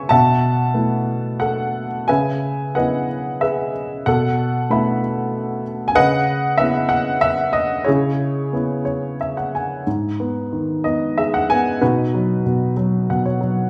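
An up-front upright piano, woody and slightly detuned with audible action noise, plays alone in this brooding, cool classical excerpt, taken from a longer piece and moving in a rubato triple metre. Its lyrical line spans G#2 to C#6 over chords that sway between B7sus4 and C#m9 before settling toward G#m and B after 9.9 seconds, with short fills at 8.5 and 12.8 seconds. A wet recital-hall reverb surrounds the intimate, natural piano tone with the resonance of a church or concert hall.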